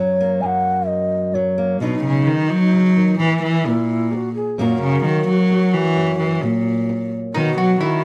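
Gentle, nostalgic acoustic folk in three, cut from a longer piece, opening on a hollow, airy bamboo shakuhachi with vibrato and a distant chiff over bright fingerpicked steel-string guitar. At 1.8 seconds a bowed cello takes the melody up front, soft-attacked and intimate with light vibrato and a slapback echo, while the shakuhachi carries a second line over the guitar's accompaniment. A woody, double-strung mandolin adds picked arpeggios at 7.3 seconds, set in a dry, close 1970s-style studio sound with light reverb.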